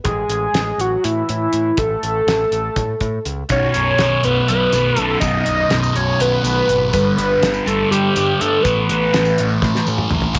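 A moderate echo-chamber reverb gives this hazy, trippy psychedelic rock excerpt a roomy sheen as it moves at 245 BPM in a straight 7/8. A hollow, woody square-wave lead carries the melody up front from the start, its detuned, sub-octave tone sustained and mellow, with chorus, vibrato and a slapback echo. Beneath it, a cloth-damped, thuddy drum kit with dark cymbals, a fat snare and a tight kick sits in a small room, while a punchy, directly recorded picked electric bass holds down the low end. At 3.5 seconds a thick, double-tracked fuzz guitar pushes forward with a dark, distorted riff swirling through a phaser, joined by a jingly tambourine tucked in the background. The harmony moves from A5 to B5, then G and Asus2, before a drum fill at 9.6 seconds carries the passage to its close.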